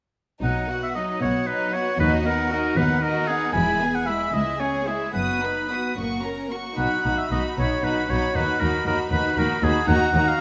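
Spirited and cheerful, this brief passage cut from a quick classical-period symphonic movement in B major moves at 76 BPM in a rubato 6/8, with a clear, up-front solo oboe carrying a second line alongside a soft-edged sul tasto violin melody, a lower violin line, intimate vibrato-touched violas in accompaniment, and a bass foundation of dark, woody cellos and gently bowed double basses, all set in a moderate scoring-stage reverb.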